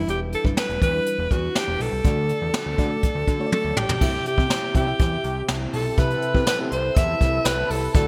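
A straight 4/4 pulse at 122 BPM drives this uplifting, glossy 1980s-style pop excerpt, cut from a longer piece and moving through Em7, D and C. An up-front jazz brush drum kit, played with brushes, pairs a boomy kick and high-tuned snare with dark cymbals, hi-hat, tambourine and toms, all cloaked in gated reverb, and a drum fill at 3.5 seconds leads into the second section at 4.0 seconds. Underneath, a fat, saturated analog bass with detuned sawtooth and square-wave tones and a plucky filter holds the low end, while an FM electric piano with tremolo adds dark, decaying chords over a faint noise layer. Up front, a breathy alto saxophone carries the melody with vibrato, scooped notes and an intimate, whispered quality, trailed by digital delay. From 3.5 seconds a dreamy, warbling FM bell sits in the background with ensemble chorus and phaser, and at 4.0 seconds a brassy, bold analog pad with a filter sweep, chorus and tremolo sustains soft-attack chords beneath it all. 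Light reverb and bright digital production give the whole track its polished sheen.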